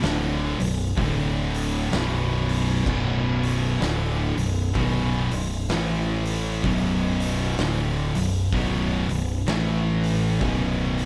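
Set in a small room with light reverb, this 11-second clip from a longer stoner and doom metal piece moves at a brooding, heavy 64 BPM in B minor with a swung 4/4 feel. Two thick fuzz guitars with a murky, picked tone and a bright, double-tracked tight distorted guitar sit back in the mix, riffing through the whole passage over Bm, D5 and A5 chords before landing on B5. Beneath them a growling fingered electric bass adds overdriven bite, while an oversized low-tuned acoustic drum kit pumps with a fat snare, punchy kick, gritty saturation and shadowy crash and hi-hat cymbals.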